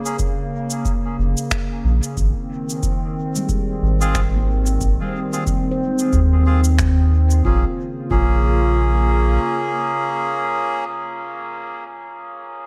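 A swung 91 BPM pulse in 4/4, carried by a deep, tape-warm electronic kick and dark, rolled-off cabasa and finger snaps, anchors this hazy, meditative ambient dub fragment in Bb dorian, where a warbling, detuned lo-fi pad with chorus holds sustained chords over Bbm and Ab, a reedy, breathy melodica drops echoing stabs, a round, up-front sub bass enters at 1.2 seconds, and a ringing stainless-steel handpan joins at 3.4 seconds with soft, echoed arpeggios in the background before the harmony settles on Bbm7 at 7.4 seconds, all within light small-room ambience.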